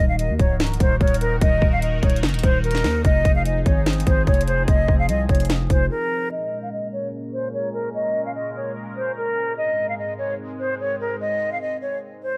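Hard-hitting and eerie, this half-time trap fragment is cut from a longer piece and carried by a hollow, pure concert flute melody with vibrato and tongued notes, softened by a low-pass filter and trailed by digital delay. Beneath it, a sweeping resonant pad holds sustained chords, its detuned sawtooth and sub-octave layers evolving with a slow attack, chorus and a bright filter swell. For the opening stretch, a growling, buzzy 808-style bass with a fast attack and decaying tail sits up front alongside an electronic trap kit of hard-clipped kick, sharp snare and metallic hi-hats. Both drop out at a brief break around 5.9 seconds. From 6.3 seconds, only the flute and pad remain, as a filter sweep runs through the second half over a digital ambience.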